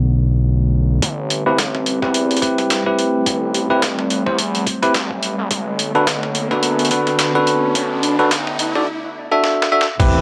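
Light digital reverb frames this gritty, playful glitch hop excerpt at 107 BPM, swung in 4/4 and set in A dorian, where a warbling, lo-fi pad with chorus and sidechain pumping holds dark sustained chords beneath bright, bell-like tine electric piano stabs colored by a low-pass filter and dub echo, an aggressive, saturated sawtooth synth bass sits up front, a compressed, pitched-down boom bap kit with a medium-tuned snare, hi-hat and crash arrives with a thumpy electronic kick at 1.0 s to drive the build-up, and a background riser from 3.1 s leads into an electronic impact at 10.0 s.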